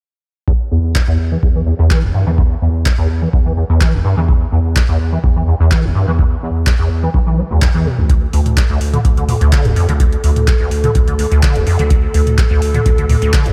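A straight, driving 4/4 pulse at 126 BPM anchors this trippy acid house cut from a longer piece, tuned to A4 = 436 Hz. A deep electronic kick with a tape-warm thump sets the groove from 0.5 seconds, and a booming analog drum machine joins with overdriven handclaps, metallic hats and toms. Up front, a rubbery, resonant square-wave acid bass plays a dark riff with a filter sweep, fast attack and saturated bite, thickened by ensemble chorus. Beneath it, a thick sine sub bass adds tube saturation and sidechain pumping. After the harmony settles on a D5 chord at 8.1 seconds, a moody, detuned analog pad enters at 8.7 seconds with slow-attack sustained chords, a moving notch, chorus and sidechain pumping. Light reverb and digital ambience frame the mix.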